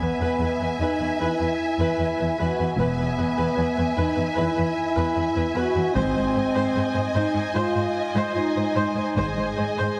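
Epic orchestral film score at 76 BPM, heroic and relentless, cut from a longer piece, where an intense, distant violin melody on G#5 sings over a soft-attack second violin line, expressive violas with portamento, punchy sustained French horn chords and an up-front, focused cello bass, joined at 2.8 s by rich bowed double basses and briefly at 6.0 s by a very quiet, dry taiko ensemble struck with hard sticks, as the harmony moves from E to Ab inside a wet scoring-stage reverb and a heavily compressed, radio-like sound.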